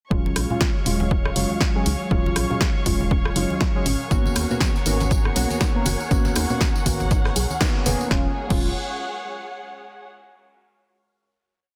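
A smooth, warm deep house groove opens with an overdriven four-on-the-floor kick, a hollow, organ-like FM bass riff and dark, chorused dotted-rhythm chord stabs with digital delay, the bass and stabs pumping together under a silky string-machine pad, a quiet round pluck arpeggio looping against the bar, lush bowed strings and a floating, held high violin note. Close, dry congas and a punchy analog drum machine with rim, hats, snare and crash fill out the rhythm, joined at 4.1 seconds by a gritty, pitched-up breakbeat and jingly tambourine sixteenths. After a band accent at 7.6 seconds, the groove gives way to a final Ebm11 chord held by the dark string section until 10.1 seconds, all within a dense, heavily limited mix with light reverb.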